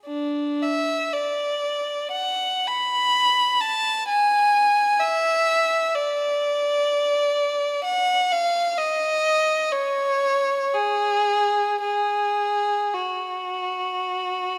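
A lone bowed violin opens the recording and carries the whole piece, its clear, focused tone placed close and up front with vibrato, ranging from D4 to B5. This meditative, yearning classical fragment in F# minor moves in a free, rubato 4/4 at roughly 48-66 BPM, tuned to A4 = 439 Hz. A moderate scoring-stage reverb with a 2.1-second decay surrounds the solo line until it ends at 14.6 seconds.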